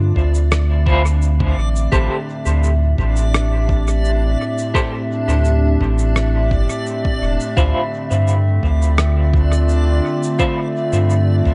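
Ambient dub at 85 BPM in D minor, this deep, hazy passage, cut from a longer piece, rests on a round, up-front sub bass and a warbling, detuned tape-like pad holding chorused, reverb-soaked chords that move from Dm9 to Am7 at 1.9 s and back at 7.6 s. A soft, tape-warm electronic kick and a dry, dark shaker and rim click carrying dub echo enter almost at once, while a reversed, granular swelling texture floats quietly in the background. From 0.9 s a twangy, slightly broken-up guitar through a small old amp adds tremolo stabs soaked in dub echo, all in an echo-heavy mix with a dulled top end and a small room ambience.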